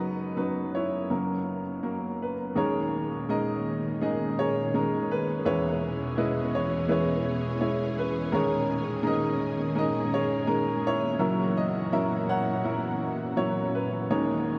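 A clear, woody upright piano carries the melody up front in this melancholic, heartbroken acoustic folk-pop ballad, its slightly boxy tone touched by an analog delay. It plays alone at first, moving from Badd9/F# to F# at a slow, straight 83 BPM in 4/4. At 2.6 seconds an analog string pad enters with sustained chords, its silky, vintage sawtooth tone blooming through a slow attack and long release, warbling with ensemble chorus and vibrato. The pad sits behind the piano as the harmony moves through D#7sus4, C#m7/E and back to D#7sus4 before resting on F#7. A cathedral reverb with a 6.1-second tail soaks the whole mix, giving this fragment of a longer piece a dreamy, heartbroken haze.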